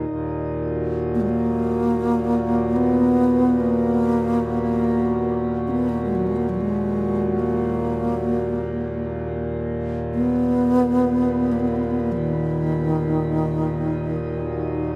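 World meditative music in free time and E-flat minor, haunting and unhurried, drifting through a vast, echoing space with a very long reverb tail. A reedy, dark pedal harmonium holds a low drone up front from the start, while a glassy, ethereal glass harmonica adds a softly beating texture bathed in shimmer reverb. At 1.1 seconds a breathy bass flute enters with the melody, crisp in attack, with vibrato, sitting forward in the mix under shimmer reverb and delay, in this section cut from a longer piece.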